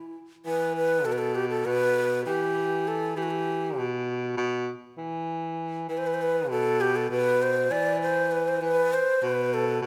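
A breathy, end-blown ney opens the passage with a soft-attacked, straight-toned melody in the middle register, carrying a soulful, longing Turkish feel in 9/8. At 0.5 seconds a mellow baritone saxophone joins beneath it on the bass line, its subtone and vibrato lending a jazz-tinged, roomy depth. A moderate concert hall reverb surrounds both parts in this brief cut from a longer piece.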